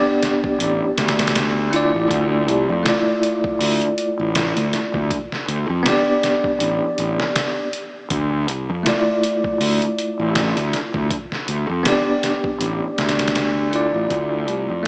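A bell-like tine electric piano carries the accompaniment in this brooding, melancholic trip hop excerpt, its bright, clean chords shimmering through tremolo and tape echo as they move between G, Dmadd9 and G/D at a slow 80 BPM with a lightly swung sixteenth feel. Underneath, a gritty, pitched-down sampler-style drum kit thumps out kick, medium-tuned snare and hi-hat from 0.2 seconds, while a round, punchy fingered bass enters at 0.6 seconds, thick with fuzz and tube saturation. The whole mix is soaked in a lush hall reverb with a small-speaker character, dreamy throughout, and it fades out from 12.1 seconds as the cut from a longer piece ends.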